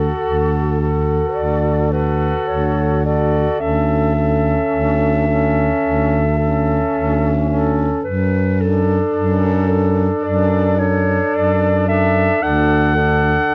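Rubato and unhurried at 54 BPM in 4/4, this serene, lyrical classical passage for single-reed quartet, cut from a longer piece, rests in D major, moving from D through A/D and D/F# back to D. A mellow clarinet carries the melody between A4 and F#5 while the alto saxophone's warm, vibrato-touched second line holds on A4 and the tenor saxophone adds a mellow, roomy accompaniment, both sounding slightly distant. Beneath them the baritone saxophone stands up front, its bass between D2 and F#2 the strongest voice in a close, detailed recording with light reverb.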